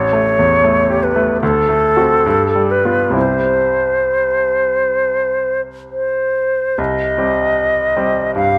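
Serene and lyrical, this short romantic classical excerpt for flute and grand piano moves with a flexible rubato feel, the pure, vibrato-touched silver flute singing the melody up front over bright, polished piano accompaniment, passing through a chain of dominant-seventh chords to rest on C before the harmony darkens to C minor at 6.8 seconds, all captured with close, detailed microphones in a light reverb.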